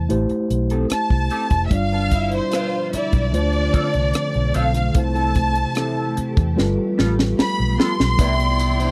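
A straight 4/4 pulse at 74 BPM from a tight, dry funk drum kit with a high-tuned snare and a round, punchy, foam-muted fingered bass anchors this bittersweet, smooth fragment of lush 1970s-style soul, where an up-front bowed violin section carries the melody over mellow tine electric piano and a slightly broken-up guitar riff with wah and analog chorus, joined from 2.1 seconds by an expressive string section playing a second line with vibrato and portamento and from 2.5 seconds by a silky string machine with phaser in the background, before a drum fill from 6.6 seconds and a jingly tambourine at 8.2 seconds as the chords move from Am7 to Cmaj9 in a dry, close studio sound.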